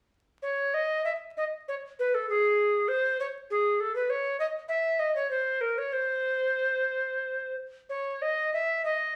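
Flowing and solemn, this short cut from a longer baroque-style classical fantasia features an unaccompanied tenor recorder playing in a rubato 6/8 from 0.4 to 9.2 seconds. The recorder sits up front with a woody, airy tone, vibrato, tongued notes and chiff at their onsets. A moderate stone-room reverb surrounds it, with a layer of vinyl crackle beneath.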